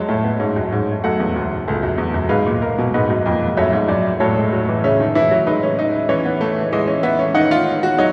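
A clear, worn grand piano sits up front and plays alone in this brief, solemn fragment of a baroque-style four-voice fugue, its lines spanning from C#2 up to A5 in a steady 4/4. The contemplative harmony moves through minor chords and shadowy diminished ones, ending on an unresolved rootless diminished sonority at 7.4 seconds as the 8.1-second cut stops. A long, wet cathedral-like reverb from a church or concert hall wraps the present piano tone in a lingering halo.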